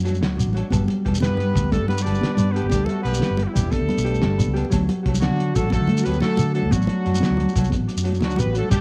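Over a carefree 12/8 highlife groove of ringing, thumb-plucked Celtic harp arpeggios, a round, dark fingered electric bass, a muffled, cloth-damped drum kit with a fat snare and tight kick that opens with a fill at 0.2 s, grainy shekere, high-tuned congas and a woody, fingerpicked nylon-string guitar in the background, a bright, punchy horn section in tight octave doubling takes the melody from 1.2 s. The music moves between D and Gadd9 in a small-room home cassette recording whose gritty tape tone colours the drums and horns.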